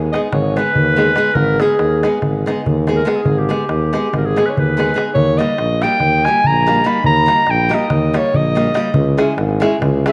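This short clip from a longer Balkan wedding-band piece is led by a clear, punchy clarinet, played up front in a classical style, carrying a solo melody between G4 and B5 across the whole 10.1 seconds. The music moves at 285 BPM in eighths within a straight 9/8 metre, set in G# harmonic minor, with a bittersweet, restless mood as the harmony passes from G#m to D# at 5.1 seconds and on to C#m at 8.9 seconds. Beneath it, a mellow tuba with light vibrato and a touch of tube saturation holds the bass between G#1 and D#2, sounding distant and roomy despite its classical-style, up-front solo character. A small, fingerpicked nylon-string guitar supplies acoustic accompaniment in the middle range, while a darbuka with a clay shell and natural skin adds high, close percussion under soft hands. A wet echo-chamber reverb with a 2.5-second decay surrounds the band, lending a spacious glow.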